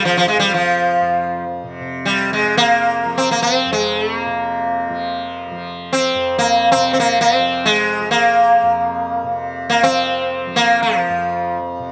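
A small room with moderate reverb gives this solemn, longing passage of Hindustani classical music, cut from a longer piece, an intimate presence. The sitar sits up front with a bright, plectrum-plucked tone, its sympathetic strings shimmering as it carries the melody between F3 and C4. Well beneath it, the softly plucked tanpura holds a warm, buzzing drone that rings on briefly after the sitar stops at 11.6 seconds.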